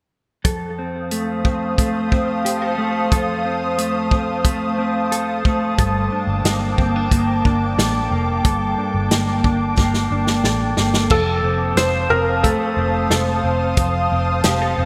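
A chorused, compressed electric guitar plays fingered arpeggios over a vintage drum kit with a punchy kick and dark cymbals from 0.4 s, soon joined by an airy, detuned pad holding slow-attack chords, setting a melancholic, hazy dream pop mood at 90 BPM over F7 and Gmadd9. A round, foam-muted picked bass enters at 5.8 s, and after a drum fill a soft, felt-muted upright piano with audible action noise and delay sings a brief melody from 11.1 s to 13.1 s. The whole passage sits in a lush hall reverb with bright 1980s-style digital sheen, cut from a longer piece.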